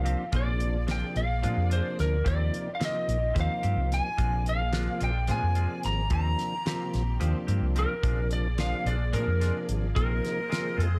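Light reverb surrounds the mix, with the round, amped fingered electric bass sitting up front. This soaring, bright piece of electric jazz fusion moves in 7/8 with a straight feel and is cut from a longer work. A slightly broken-up, picked lead guitar carries the melody, while an airy silver concert flute with vibrato plays a second line in the same register from the background. A tonewheel organ with key click and a slow rotary speaker supplies a fat, clean accompaniment, a twangy electric guitar with subtle chorus adds stabs, and a biting, lush symphonic string section holds bowed chords behind them. A dry 70s drum kit with a fat snare, tight kick and hi-hat enters at 0.1 s, as the harmony moves between Bb7 and Eb69 before settling on Bb9sus4 at 10.0 s.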